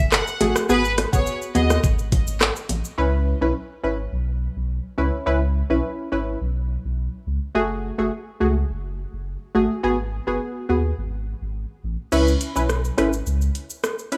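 A straight 4/4 dancehall groove sets a tough, sultry mood in this short cut from a longer piece, with an electronic, produced drum kit delivering a knocking kick, metallic hi-hats, handclaps, rim clicks, shaker and crash, all re-recorded in a large room and sitting up front. Close, dry, low-tuned bongos add a round acoustic layer in the background during the opening moments. A deep, sine-toned sub bass holds the low end until just before the end, mellow and sustained. A punchy sawtooth chord stab carries the harmony, detuned and bright with chorus, a filter sweep and sidechain pumping, moving through minor seventh and added-ninth chords. A distant, intense violin section with light vibrato plays a short bowed melody through digital delay before dropping out at 1.8 seconds. The drums fall away at 3.0 seconds, leaving bass and stabs, then return at 12.1 seconds with the kick muted, all in a rough demo-style mix with little reverb.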